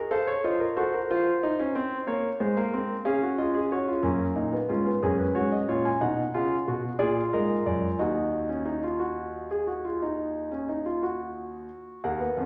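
Classical, baroque-style four-part fugue for solo concert grand piano, driving and solemn in a straight 12/8. The piano sits up front with an intimate, smooth character, deep bass and audible action noise, spanning Eb2 to Ab5 through a wet recital-hall reverb. This passage, cut from a longer work, turns to a new section at 4.0 s and plays on until 12.5 s.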